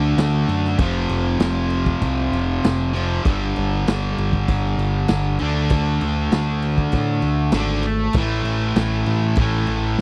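A straight, driving 4/4 groove at 98 BPM carries this swaggering classic rock excerpt, where a bright, double-tracked distorted electric guitar riff moves through D, F5, G5, D5 and A5 over a growling, round overdriven picked bass, with a vintage drum kit of punchy kick, medium-tuned snare and dark crash cymbal entering at 0.2 seconds in a dry, close 1970s-style studio sound.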